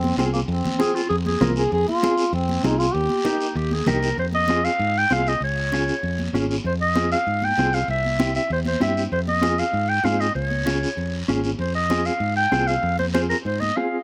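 A growling, gritty clarinet takes over with a jazz-style solo from 4.2 seconds, its scooped notes and light vibrato up front in this fiery, driving cumbia excerpt in F minor at 194 BPM. It follows a brief opening line from a mellow duduk, distant and roomy with folk-style vibrato, which stops at 3.6 seconds, while a direct, up-front fingered electric bass and a dark, clean electric guitar with tremolo carry the chord changes. Bright, high-tuned congas sit in the background and a raspy guiro sounds distant, and the recording is dry, made outdoors with little reverb.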